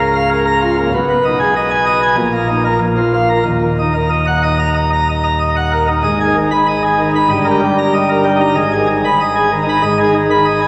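Stormy and majestic, this classical organ toccata moves at 95 BPM in a straight 4/4, cut from a longer piece. A solo pipe organ plays throughout on full plenum registration with mixtures, its brilliant baroque voicing spanning from Db1 up to B5 and sitting up front, with a crisp chiff at the start of each note. The opening passage wanders through darker harmony, from Bbm over Db to Ebm, before the music settles into G# minor at 6.1 s. From there it turns between G#m and D# over G, returning to G#m at 8.6 s. A wet church reverb with a three-second decay surrounds the organ, giving the sound a vast, resonant space.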